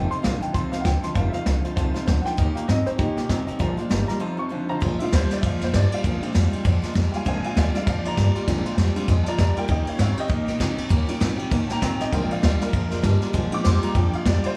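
Rollicking, retro rockabilly excerpt swinging at 197 BPM in Bb mixolydian, where a dark, mellow upright piano carries the melody until 4.8 seconds before a detuned, jangly honky-tonk upright piano takes a solo over a twangy, slightly broken-up electric guitar riff with phaser, a boxy picked acoustic guitar in the background, a woody, thumpy pizzicato upright bass and an up-front brush drum kit with dark cymbals, all in a small room ambience.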